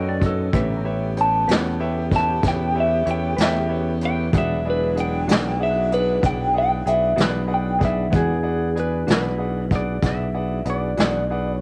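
A slow blues in 12/8 at 63 BPM, this swaggering, gritty excerpt is cut from a longer piece and moves through B9, A9 and E9 chords. An electric guitar through a small old amp carries the melody with a slightly broken-up, compressed, picked tone, colored by phaser and cassette tape, and takes a clean solo until 8.1 seconds. Beneath it, a bright concert grand piano with brilliant, polished highs and deep bass plays accompaniment. A soft, flute-like tonewheel organ with slow rotary speaker and chorus vibrato holds very quiet chords, joined until 8.1 seconds by a saxophone section with ensemble vibrato sitting in the background. A growly, punchy fingered electric bass and a vintage brush drum kit with a medium-tuned snare, punchy kick, hi-hat and rolled-off top sit up front. A dark, clean, fingered second electric guitar adds very quiet accompaniment, all framed by light reverb and studio ambience in a homespun cassette sound.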